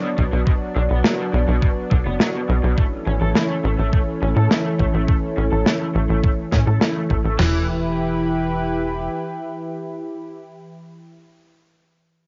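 A lush, warbling unison pad with sidechain pumping and plate reverb opens this nostalgic, cinematic synthwave excerpt alongside a raw, overdriven garage guitar riff soaked in tape echo, soon joined at 0.2 s by a tight, punchy sawtooth sequencer bass and a detuned 8-bit drum machine with a thumpy kick, while a dark, smooth acoustic snare enters at 1.0 s and the guitar falls away at 7.7 s, the piece recorded at home on cassette in a modest booth.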